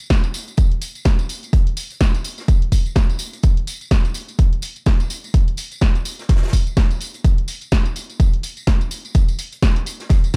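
A dry, gritty hardware recording with studio reverb carries this energetic, soulful house groove at 126 BPM in 4/4, swung at 58% on the 16ths and cut from a longer piece. An up-front, tape-warm electronic kick re-recorded in a large room drives the beat, while a punchy analog drum machine supplies hi-hat and a dry snare, and a close acoustic tambourine adds maraca and group-handclap colour. A natural country drum kit sits in the background with a fat snare and hi-hats, its hats, snare and small-room sound thinned by high-pass filtering.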